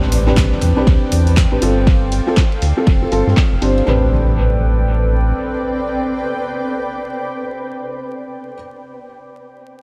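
Smooth and moody, this deep house excerpt pairs a hollow, flute-like pad with dark felt-muted upright piano stabs that carry audible action noise and dub echo, both pumping against the sidechain, over a round analog bass and an up-front deep electronic kick layered with a dark-hatted deep house kit of handclaps and hi-hat and a gritty, saturated garage kit of ride and snare sitting in the background alongside an electronic impact, while a bright granular cloud pad drifts in at 2.0 s and the drums fall away by 3.9 s, all within an echo-heavy, vinyl-crackled mix moving between Am11 and G9sus4.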